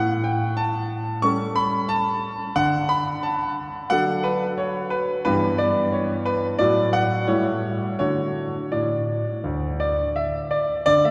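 A long, wet cathedral reverb of 4.4 seconds surrounds this recording, made in a church or concert hall, yet the concert grand piano stays clear and up front, with an open sound and a deep bass. This classical-period piano sonatina in D major moves in 4/4 at about 83-92 BPM, played with a flexible rubato that gives it an elegant, graceful mood. The solo piano spans D2 to C#6 across this brief fragment of a longer piece, sounding from 0.0 to 11.1 seconds. The harmony opens on A7, settles onto D at 2.6 seconds, and passes through Em/G, D/A and A7 before closing on D at 8.0 seconds. The instrument is tuned to A4 = 442 Hz.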